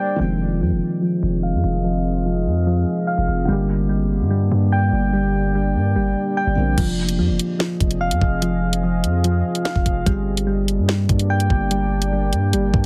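A moody, detuned ambient pad and soft, round electric-piano-like synth keys with chorus and delay open this tense, cold drill excerpt, joined at 0.2 seconds by a deep, long 808-style bass and a muted, felt-dampened upright piano in the background with audible action noise, all moving between Fm7 and Gm under a filter sweep. At 6.8 seconds the piano drops out and an up-front, tape-warm drill kit arrives in half-time feel, with a knocking kick, sharp snare, hi-hat and crash. The mix is dry and heavily compressed, with a radio-like character.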